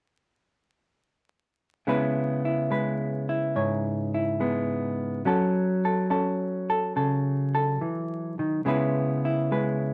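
Moody and late-night, this brief excerpt from a longer solo jazz piece in C# minor finds a dark, clean, fingered hollow-body electric jazz guitar up front, swinging gently at 71 BPM in 4/4 from 1.9 to 9.9 seconds over C#m7 and F#m7 chords, set in a moderate large-studio reverb with a layer of vinyl crackle.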